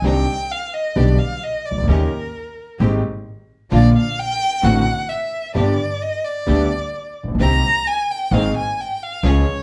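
Heard from further back in a club-sized room, this short tango excerpt sits in a wet reverb that gives the ensemble a sultry glow. A single bowed violin plays close and up front, its soft attack, vibrato and portamento giving the solo line a passionate, expressive voice that carries to the very end at 9.6 seconds. Beneath it, an intimate vintage concert grand piano supplies smooth, deep-bottomed accompaniment, its action noise audible. An acoustic upright bass with steel strings is plucked pizzicato, with a woody, warm tone. A lush, clear studio string section sits in the background, adding intense bowed stabs with vibrato, while the rubato feel lets the harmony move from C minor with an added ninth through dominant sevenths and a major seventh before settling back on C minor and A-flat.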